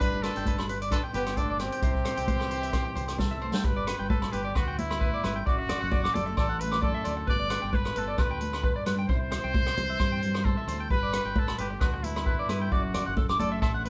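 Sunny and warm, this highlife guitar band excerpt moves at 132 BPM in G major with a gentle swing on the sixteenths. A clear trumpet with light vibrato carries the melody throughout, while a breathy, distant alto saxophone with scooped notes adds a second line only until 3.2 seconds, when a drum fill leads into the longer second section at 3.6 seconds. A twangy electric guitar at the edge of break-up picks arpeggios high above, and a full-bodied, fingerpicked nylon-string guitar sits in the background as accompaniment. Underneath, a round, punchy fingered electric bass anchors the harmony, which cycles between G, C and Dadd9/F#. The vintage drum kit sits up front with a tight kick, medium-tuned snare, hi-hat and rim click, while bright, dry congas and ringing agogo bells fill out the background, all captured as a band playing live in one room with light reverb.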